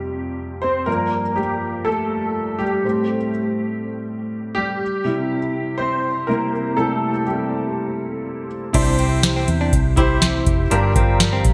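A clear, intimate concert grand piano, its action noise audible and its tone thickened by ensemble chorus, plays Fsus2, Gm7, Am7 and C chords alone for 8.7 seconds before a booming analog drum machine with gated reverb, deep kick and metallic hats, a round, foam-muted fingered electric bass and a clean, compressed electric guitar riff join in this hopeful, anthemic piano-driven pop excerpt at 122 BPM, all set in a lush hall and a bright 1980s-style digital production.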